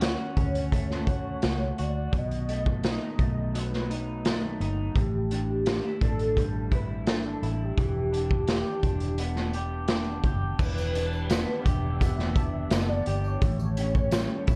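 A raw garage drum kit sits up front in a straight 4/4 groove, its punchy kick, medium-tuned snare, hi-hat and crash carrying a gritty, saturated edge from old 12-bit sampler grit and a pumping small-room sound with a rolled-off top. This hazy, mellow stretch of bedroom-flavored indie pop is anchored by a vintage muted fingered electric bass, dark, round and foam-muted, while an electric guitar through a small old amp picks out slightly broken-up, compressed, lo-fi accompaniment, swirling with analog chorus and a warbly pitch drift. Over them a velvety synth lead carries the melody with a smooth, sustained tone and vibrato, bathed in ensemble chorus, tape echo and plate reverb. Across the excerpt the harmony moves through Dmaj7, B7, A7sus4 and Em7 before landing on A7 at 13.4 s. At 10.6 s a lush, detuned unison pad with a slow attack joins in the background alongside a jingly, bright tambourine, thickening the sound. 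The production is dark and warm with light reverb, and the excerpt is cut from a longer piece.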